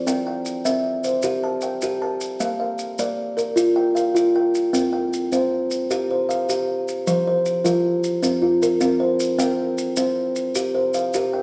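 A woody, hollow-bodied kalimba plays ringing arpeggios up front in this hypnotic, warm excerpt of a southern African traditional mbira-style interlocking cycle in 12/8 at 103 BPM in C mixolydian, tuned slightly low to A4 = 436 Hz, moving over C and Bb before shifting at 4.7 seconds to C5, F5 and C5 harmonies, while softer, grainy maracas sound beneath it throughout, all set in a recital-hall reverb and captured with close, detailed microphones.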